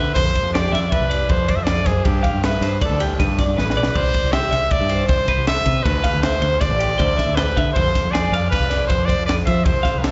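Set in a straight 5/4 at 158 BPM, this intricate, playful cut of math rock and midwest emo comes from a longer piece and sounds like a live gig heard through the venue's PA, with a recital-hall ambience and a dulled top end. A clear trumpet carries the melody up front with a light vibrato and a punchy, pop-style edge, coloured by slapback echo and digital delay. Beneath it, a bright, twangy twelve-string electric guitar plays compressed, clean, picked arpeggios treated with tremolo and slapback echo. An overdriven, growling fingered bass sits forward in the mix, while a crisp acoustic fusion kit enters at 0.2 seconds with a high-tuned snare, a punchy kick, ride and crash in a small, pumping room, and plays a short fill at 3.6 seconds. The harmony moves from F5 through G, Cmaj9 and D7sus2 before returning to F5 at 7.8 seconds.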